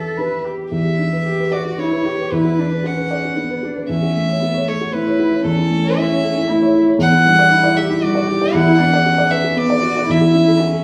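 Fragile and reflective, this short cut from a longer neoclassical piece for piano and strings moves in a rubato 3/4 at 116 BPM in E dorian. A felt-muted upright piano carries the accompaniment up front, its thick felt giving a soft, mellow, intimate tone with short sustain across a range from E2 to D5. Above it, a single bowed violin sings the melody between A4 and F#5, played sul tasto with a soft attack and a pure, floating quality, touched by a slapback echo. A single bowed cello adds a second line from A3 to B4, sounding woody and close with vibrato, also sul tasto. The harmony circles from Em7 through Bm/E, F#m7/E and A/E over an E bass, returning to Em7 at 7.0 seconds, while a wet studio ambience with a 0.5-second reverb places the trio together in one room.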